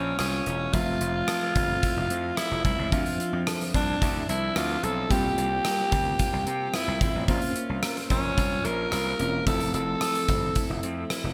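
Uplifting and nostalgic, this 1980s-style pop passage, cut from a longer piece, puts a raspy, edgy alto saxophone up front carrying the melody through a digital delay over chords moving from Bbmadd9 to Fmaj7, Dm9 and C7sus4. An overdriven slap bass with a gritty, bright bite sounds from the opening, and a punchy gated 80s drum kit of hi-hat, kick drum and rim click enters at 0.2 seconds in an airy stone room. In the background sit a worn, slightly out-of-tune tine electric piano with light overdrive and a clean, compressed electric guitar riff recorded direct with subtle chorus, all washed in a lush hall reverb and a polished digital sheen.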